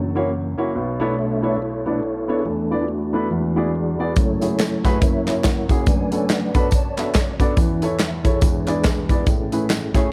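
Swung eighths at 141 BPM drive this reverent, soulful uptempo gospel excerpt, where the drum kit and a background layer of tambourine, maracas and group handclaps join at 4.2 seconds, the punchy kick and medium-tuned snare sitting up front. From the opening, a soft, flute-like tonewheel organ takes the solo over sustained chords, its clean tone carrying chorus vibrato, key click and a stopped rotary speaker. A dark grand piano with long sustain accompanies up front, moving through rich sevenths and ninths such as F#7, Bm11 and E9 before settling on Amaj9, all in a light studio reverb.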